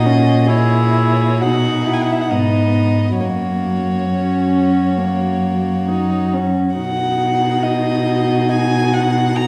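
Warm and lyrical, this brief passage from a slow romantic movement for string quartet unfolds with a gentle rubato across its 9.5 seconds. The first violin carries the melody in a rich tone with light vibrato, while the second violin plays a pure, floating second line beneath it. The viola fills in the accompaniment and the cello anchors the bass, sitting up front in the blend. All four players bow sul tasto with soft attacks and an airy sound, giving the quartet an intimate quality. The harmony moves from F#7 over A# to B, then to F# at 3.2 seconds and back to B at 6.8 seconds. A reverberant recital hall surrounds the ensemble, heard from further back in the room.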